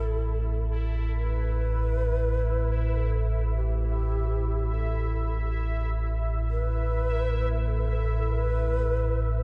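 A slow, straight 4/4 pulse at 50 BPM underlies this cavernous, desolate dark ambient drone, a 9.4-second excerpt resting on an A5 chord. Up front, a deep, ominous drone of triangle and sawtooth tones rumbles low with phaser, lush chorus and a filter sweep, while a resonant, detuned sawtooth texture bubbles through random filter steps higher up. A distant, breathy bamboo shakuhachi carries the melody with vibrato, tongued chiff and tape echo, all set in a dark production with a huge ambient reverb.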